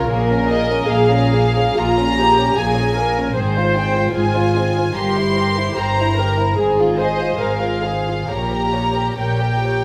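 Up front, a violin section carries a pure, floating melody played sul tasto in this yearning, solemn slow movement for string orchestra in F minor, moving at 64-78 BPM in 4/4 with a rubato feel. Beneath it, a second violin line sings with light vibrato and an intimate quality, rich violas supply the accompaniment, and warm cellos and dark double basses share the bass, the lower strings bowed with soft attacks. A wet recital hall reverb surrounds this short passage cut from a longer piece, whose harmony moves from Bbm7 through C7/G to a closing Gdim/Bb at 8.3 seconds.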